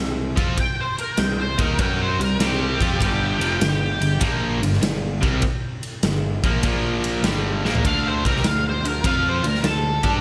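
A dark, octave-fuzzed lead guitar solos through wah, distortion and tape echo, entering at 0.6 s and returning at 7.9 s, over a double-tracked, overdriven cranked-stack riff, a growly fuzz-driven picked bass and a big acoustic rock kit with punchy kick and bright cymbals that drops a fill at 7.5 s, in this swaggering, raunchy blues rock and southern rock cut at 99 BPM with a swung feel, moving through C5, G5, Bb5 and D5 inside a big arena sound with concert hall reverb.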